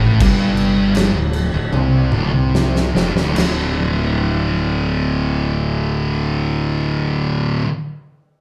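A pair of picked fuzz guitars and a fingered electric bass open this stoner and doom metal excerpt together, grinding out a sludgy, ominous riff over a D minor chord at a crawling 71-82 BPM in straight 4/4. The two distorted guitars sit low and thick, one of them pushed up front, while the bass growls beneath them with overdrive and tube saturation in a direct-and-amped tone that is also up front. An oversized, low-tuned acoustic drum kit joins almost at once, its boomy kick, fat snare, toms and dark crash cymbal sounding saturated and gritty in a big, pumping room. The band slows through the opening section, and the drums break into a fill at 1.7 seconds before dropping out at 3.6 seconds. From there the guitars and bass keep grinding out the riff over a D power chord until the cut, all of it bathed in a wet, large studio reverb that captures a band playing live in one room.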